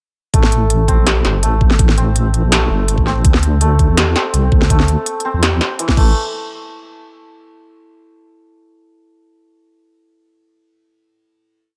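A deep, detuned wobble bass with chorus holds long dark notes up front in this dark, tense half-time drum and bass piece at 165 BPM in A phrygian, moving from Am to D5 while an overdriven, knocking electronic kick and an industrial kit of clanging snare, crisp hats and crash keep a sparse half-time beat, and a shimmering, hammered santur loops a six-step arpeggio through digital delay that drifts against the bar, the drop running from 0.3 to 6.2 seconds before a final hit.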